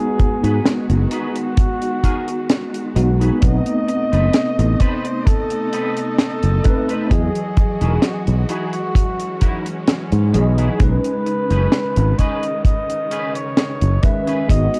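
Vaporwave with a woozy, faded mood, this short excerpt from a longer piece sets a mellow, breathy flugelhorn melody with vibrato and tape echo, sounding distant and roomy, over a bell-like tine electric piano with ensemble chorus and a rich, bowed string section holding smooth sustained chords through G#m7, B7b9, Emaj9 and B69. A clean, scooped electric guitar riff with chorus and tape echo enters at 0.2 seconds alongside a dry, dark reggae drum kit with a high-tuned snare and a tight kick, both up front and dressed in studio reverb, while a growly, punchy fingered electric bass joins at 0.4 seconds. The dark production carries a cassette tape character and small room ambience.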